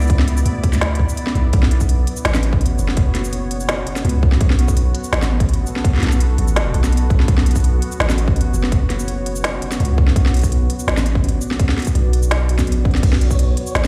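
A long, deep 808-style bass sits up front through this dark, spacious half-time drum and bass excerpt in B minor at 167 BPM, its mellow sine tone holding under a moody, detuned sawtooth pad with chorus and slow-attack sustained chords, while a tight, layered electronic kick drives a swung groove from 0.1 s. An overdriven electronic kit adds a woody snare, crisp hi-hats, shaker and crash cymbal, and at 13.3 s a grainy, flickering granular texture surfaces in the background. The whole mix rings out as if played on a big sound system in a bare room, washed in large studio reverb.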